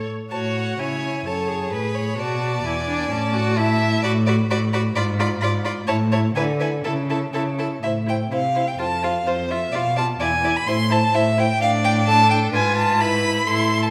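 A wet, reverberant church or concert-hall acoustic surrounds this cheerful, spirited classical-period string quartet passage, cut from a longer piece and played with a flexible, rubato feel. Up front, a rich, focused first violin carries the melody with vibrato, while a smooth, even second violin supplies a supporting line and a clear, intense viola fills in the accompaniment. A warm, expressive cello anchors the bass with a soft attack and portamento, and the harmony turns darker at 7.8 s.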